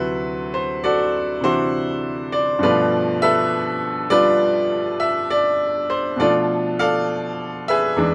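Solo jazz with a playful, swinging feel, this brief fragment cut from a longer piece features a bright upright piano alone, its brilliant, woody tone ringing open with long sustain, placed up front in a close, detailed and nearly dry sound, moving through D9 and G9 before settling on Bm7b5 at 6.2 seconds.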